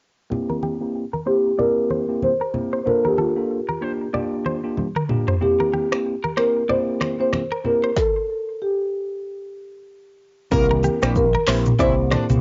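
A bell-like tine electric piano and bright, low-tuned congas open this smooth, sultry afrobeats excerpt at 0.3 seconds, joined moments later by a twangy, scooped clean guitar riff colored by spring reverb, then by a woody, round marimba carrying the melody with soft mallets and a touch of analog delay. The groove sits at 94 BPM in 4/4 with a lazy sixteenth-note swing, moving over C7, Bbmaj7 and Gm7 harmony. At 4.8 seconds a drum fill brings in an electronic afro-pop kit, overdriven and up front, with a deep kick, woody snare, smooth hats, rim clicks, snaps, claps, shaker and toms. The harmony then drops away into a chordless stop before a new section arrives at 10.5 seconds, where a dark, punchy fretless bass with analog chorus and a tight, mellow horn section in octave doubling enter over a return to C7. The home cassette sound rolls off the highs and wraps the piano, guitar, marimba and drums in tape character, with light reverb.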